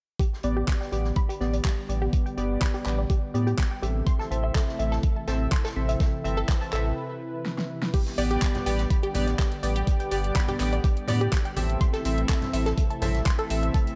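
Bittersweet and driving, this progressive house excerpt sets a knocking, overdriven electronic kick and a thick, saturated sub bass up front. Around them sit a fat-snared pop drum kit with crash and handclaps, a mid-forward vintage drum kit with a rolled-off top in the background, and detuned sawtooth pluck arpeggios with delay. Glossy, retro polysynth stabs carry 12-bit grit, and a warbling, lush pad holds sustained chords, all three synths filter-swept through the opening section until a break at 7.0 s. Ringing hard-hand congas join at 8.6 s under pumping sidechain and light, dark-toned ambience.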